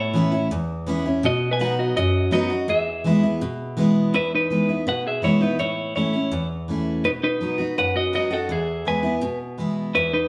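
A straight 4/4 country groove at 165 BPM in E major sets an easygoing, sunny mood in this short cut from a longer piece, where a clean, twangy, compressed electric guitar with spring reverb carries the up-front melody over a bright, full-bodied jumbo steel-string acoustic guitar picking the accompaniment through chords moving from Aadd9 to B and E, the two playing live together in a moderate stone room throughout the 10.3 seconds.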